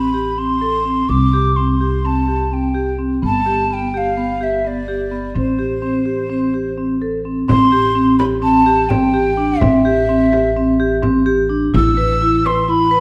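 A breathy, hollow flute melody floats over ringing, metallic vibraphone arpeggios and thumpy pizzicato upright bass from the start of this pensive, restless chamber piece in 9/8 at 254 BPM in eighths, moving from Am7 through G7, before a close frame drum joins in the background at 7.5 s, all set in a dark production with a moderate scoring-stage reverb.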